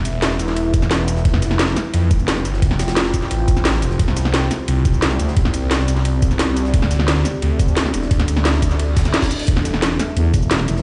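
Aggressive and futuristic, this dark technical drum and bass excerpt pairs a swirling, saturated detuned saw bass with a deep, moody ambient pad that pumps under sidechain, while a knocking electronic kick, an up-front kit with cracking snare and metallic hats, a very quiet gritty jungle sampler-style kit with high-tuned snare, and a reverse cymbal at 8.9 seconds lead into a growling FM bass entering at 10.2 seconds, all heard through a stone room's reverb on a big sound system.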